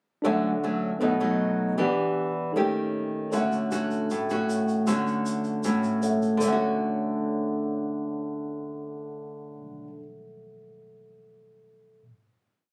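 A sunny, sophisticated bossa nova piece in D major at 156 BPM, in which an up-front, bright nylon-string guitar with fresh strings plays fingerpicked thumb bass and syncopated plucked chords through Dmaj7, B7, Em7 and Eb7#11. A worn, slightly out-of-tune tine electric piano holds clean, rootless chords beneath it, while a grainy, saturated tube shaker joins at 3.3 seconds and stops at 6.5 seconds. The short tune settles on a final chord from 6.4 seconds, heard as if captured on a phone in the room, with light club reverb and compression.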